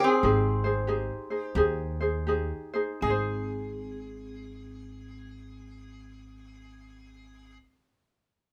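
Light reverb surrounds this recording, with the guitar, ukulele and bass sitting up front. It is a relaxed, sunny Hawaiian piece in 4/4 with a swung eighth-note feel, cut from a longer performance, and it slows down over its first 3.0 seconds. A lap resonator guitar carries the melody, played with slide and fingerpicks, and its tone is metallic, nasal and mellow. A fingerpicked ukulele gives light, warm accompaniment, and a pizzicato upright bass on steel strings adds a woody low end from 0.2 seconds. Lower in the mix, a vibraphone struck with hard mallets, motor off, plays a ringing second line with a boxy small-room character. The harmony rests on a major-seventh chord before settling onto a plain major chord at 3.0 seconds.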